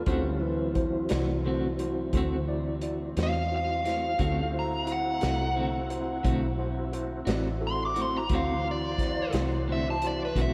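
This is a slow blues in 12/8 at 58 BPM, laid-back and gritty, opening at once on a D7 chord with tonewheel organ chords sitting in the background through a slow rotary speaker and chorus vibrato, a touch of key click audible, over a round, foam-muted electric bass played with the fingers and kept up front. At 0.1 seconds the vintage drum kit comes in with hi-hat, punchy kick and a medium-tuned snare, its sound rolled-off at the top, alongside a clean picked electric guitar with tremolo and a barky, overdriven tine electric piano pushed through a combo amp with fast tremolo. From 3.2 seconds a dark, smooth lead guitar, overdriven and picked, carries the melody up front, ranging from B4 up to D6. The whole mix is soaked in a wet cathedral reverb with a long 6.5-second tail, giving a dreamy haze to this short cut from a longer piece.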